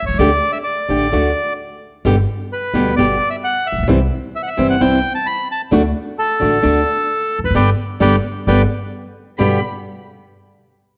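A rubato 4/4 pulse at 131 BPM carries this short, playful and nostalgic tango fragment in G major, cut from a longer piece. A reedy, close-miked bandoneon sings the melody up front, dry and full, while an upright bass plucks growly, woody pizzicato notes in the low register beneath it. From 0.2 s a fingerpicked flamenco guitar adds its own up-front accompaniment, with audible finger squeak, moving through Dsus4, D, G, C and D before a band accent arrives between 7.5 and 9.4 s and the harmony drops out briefly. At 9.4 s, as the chord returns to G, a dark violin played by one player touches a single high note, bowed with vibrato and portamento. The recording sits in a moderate scoring-stage reverb and carries the worn, warbling pitch drift of old cassette tape.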